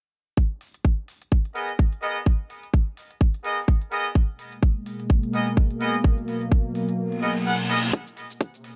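Bass house excerpt at 127 BPM in G# minor, gritty and aggressive, with a swung groove built on a tight, tape-warm electronic kick up front and crisp, overdriven hi-hat and cabasa. Punchy vintage horn stabs arrive at 1.6 s, pumping against the kick through a low-pass filter and tape echo, and a detuned sawtooth pad with slow attack, chorus and 12-bit sampler grit warbles in at 4.2 s. The kick drops out at 7.0 s, and from 7.2 s a reverse cymbal and riser build under light reverb.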